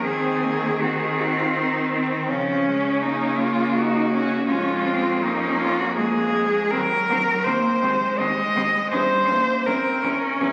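A classical excerpt for cello ensemble in Db major, solemn and melancholic, unfolding at 81 BPM in a rubato 3/4 and cut from a longer piece. A clear, focused cello carries the melody from C4 to Eb5 with vibrato, up front and close, while a rich, smooth-topped cello sings a second line beneath it, another clear cello supplies accompaniment, and a distant, even bass cello with light vibrato anchors the harmony, all bowed by single players through chords such as Db69, Cm7b5/Eb and Edim7. The sound sits in a wet concert hall reverb and carries the crackle of a very old 78 rpm record.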